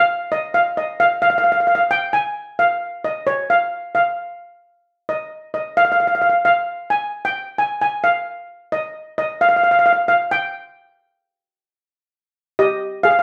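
A solo steel pan, metallic and shimmering, opens this festive, carefree calypso fragment at a straight 132 BPM in 4/4, its double seconds struck with medium rubber sticks and ranging from G4 to Ab5. The pan sits up front with an airy quality, wrapped in moderate studio reverb that gives the sense of a band playing live in one room. Cut from a longer piece, it runs to 13.2 seconds.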